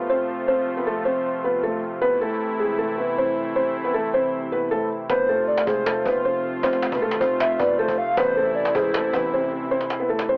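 This dark, melancholic hip hop and trap fragment moves at 156 BPM in 4/4 with a half-time feel, set in A minor over a slow drift between F and A minor. Up front, a felt-muted upright piano carries the melody from the opening, soft and intimate with audible action noise, filtered and run through cassette tape and tape echo. Beneath it, a warbling analog pad holds sustained chords with a slow attack and chorus, its detuned, wave-folded tone giving a vintage haze. At 5.1 seconds a hollow, woody clarinet-like synth lead enters with a second line touched by vibrato, chorus and tape echo, while a punchy 808-style bass sits heavy in the background and a cajon adds woody, compressed hits with faint snares. The 808 drops out at 9.7 seconds, and the whole piece has the lo-fi character of a home cassette recording heard through AM radio, with light reverb.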